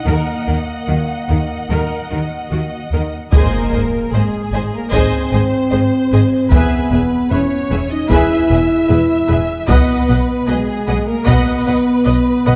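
Heroic and triumphant, this cinematic orchestral film-score cue at 76 BPM sets dark, up-front French horns holding chords beneath lush, vibrato-laden violins carrying the melody and a second line, smooth violas, and cellos and double basses anchoring the bass, until at 3.3 s close, dry taiko drums struck with hard sticks and a huge, bright impact in the background arrive as the harmony moves from Eb minor through Ab, E and B in a warm scoring-stage ambience.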